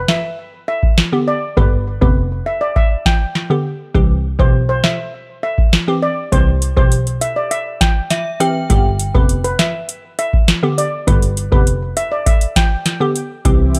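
A dry, close-sounding dancehall excerpt at 101 BPM, summery and bouncy, is driven by a booming analog drum machine with a deep kick, tonal snare and metallic hats sitting up front. A shimmering steel pan carries the melody with delay, while a glassy, crystalline wavetable pluck with chorus and sidechain pumping plays the accompaniment, and a dark, veiled muted double bass, bowed with vibrato, holds the low end over chords moving from G to C and back to G. A warbling FM synth chime adds a brief second line at 8.1 seconds, and a lush, detuned unison pad with chorus and phaser arrives only at 13.6 seconds, just as the piece is cut off.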